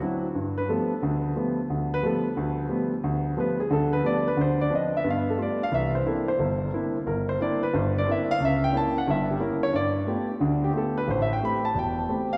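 A relaxed, playful jazz swing at 179 BPM in 4/4 with a lilting eighth-note feel, this short excerpt in G mixolydian features a solo grand piano with a warm, natural, up-front tone spanning the low to high registers, moving through chords such as G9, C9 and C#dim7, and bathed in a lush church reverb that lingers for about 3.1 seconds.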